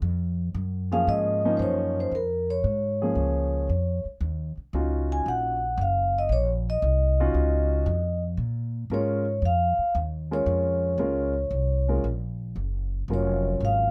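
Dry and close, with little reverb, this short cut from a longer small-group swing and bop tune puts all three players up front. Set in Bb minor at 115 BPM in 4/4 with a strong swing on the eighths, it has a swinging, late-night mood. The upright bass opens alone, plucked on steel strings with a woody, growly tone, before the vibraphone and piano join at 0.9 seconds. Played with soft mallets and the motor off, the vibraphone carries the melody in a metallic, ringing voice that stays mellow. Beneath it, a dark concert grand supplies accompaniment with a natural, deep-bottomed sound, slightly quieter than the other two. The harmony moves from Bbm7 to Ebm9, returns to Bbm7, and reaches Gbmaj7 at 12.6 seconds before the passage breaks off.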